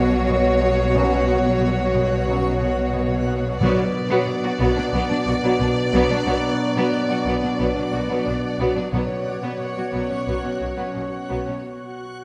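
Steeped in a wet scoring-stage reverb, this uneasy, eerie suspense film-score fragment in B minor at 90 BPM sets a rich, vibrato-laden violin section carrying the melody over a second violin line, a clear viola section, a very quiet, distant cello section and a rich double bass section. A ringing, fingerpicked concert harp riff sits in the background alongside a dreamy, reversed, granular swelling texture, while mellow French horns and dark trombones add sustained chords from 0.9 s and close timpani strokes mark 3.6 s and 8.9 s.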